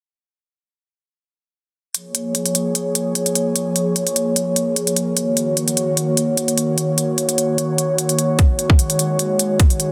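An airy, breathy pad carries this bittersweet, emotional future bass fragment, holding sustained chords through a detuned, chorused haze with vintage 12-bit sampler grit, sidechain pumping and a filter sweep running from 1.9 s. Crisp electronic hi-hats sit up front beside it in a half-time, lightly swung feel, and a hard-clipped kick joins only at 8.4 s. A lush hall reverb surrounds the parts, and the master is dense and heavily limited.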